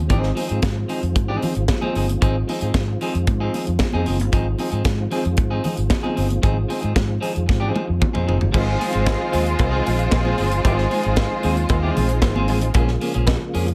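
A straight 4/4 disco groove at 114 BPM drives this sultry excerpt, with a tight, up-front funk kit of bright cymbals, high-tuned snare and tight kick pushing alongside a dark, round, punchy fingered bass, while a clean picked electric guitar accompanies and a mellow, key-clicking tonewheel organ with chorus vibrato and fast rotary speaker sustains chords in the background over very quiet damped congas, until a drum fill at 7.5 s leads at 8.5 s into a lush, smooth bowed violin section and a faint metallic cowbell, the harmony moving from Ab6 to Bbm7 under light studio reverb.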